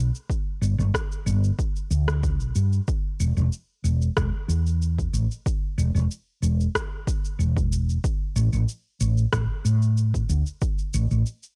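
A straight 4/4 groove of layered electronic shaker and rim click, anchored by a punchy, up-front electronic kick, carries this smooth, blissful sunset chillout fragment, while a dark, round, hollow-body fretless electric bass with lush chorus sits forward in the mix, all captured in a dry, gritty hardware recording with transformer saturation, cassette-tape character and digital ambience.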